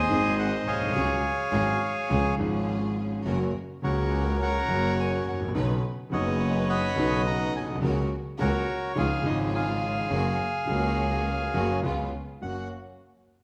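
A reedy, vintage-toned bandoneon sits up front and carries the melody throughout this short tango, cut from a longer piece, with a band-limited character that adds to its playful, nostalgic mood. The pulse is set at 105 BPM in 4/4, though the feel is rubato, and the music stays in F# major. A smooth grand piano, also up front, plays the accompaniment from low in the bass register to the middle range, while a single bowed double bass, close and expressive, adds vibrato and portamento to its low bass line. In the background, a lush studio string section adds bowed stabs with a biting edge and an even, ensemble sound. The harmony moves through chords such as C#sus4, Badd9 and C#7 before settling on F# at 12.4 seconds, and a wet, large studio reverb gives the whole performance a generous sense of space.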